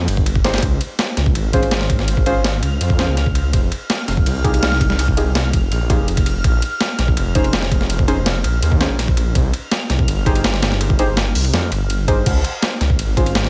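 The gritty, compressed breakbeat kit with its thumpy kick and high-tuned snare drives this dark, raw drum and bass excerpt at 165 BPM, over a thick, menacing detuned saw bass, soft chord stabs treated with subtle chorus, cassette tape and dub echo moving from Abmaj7 through Fm9 and Bbm11, and a dreamy reversed texture in the background from 1.7 to 12.3 seconds.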